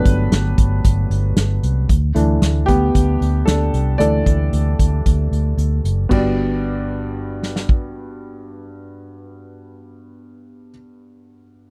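Piano-driven pop with an anthemic, uplifting mood, this clip from a longer piece opens with a clear concert grand piano solo of natural, short-sustained tone and deep bass over Gmaj7 and Dsus2 chords. A dark, round, foam-muted electric bass, amped and punchy, and an acoustic small-room drum kit played with bundle sticks, with tight kick, medium-tuned snare, hi-hat and crash, sit up front beside it. The drums drop out at 7.8 seconds as the second section settles back on Gmaj7, all captured in a dry, close 1970s-style studio sound.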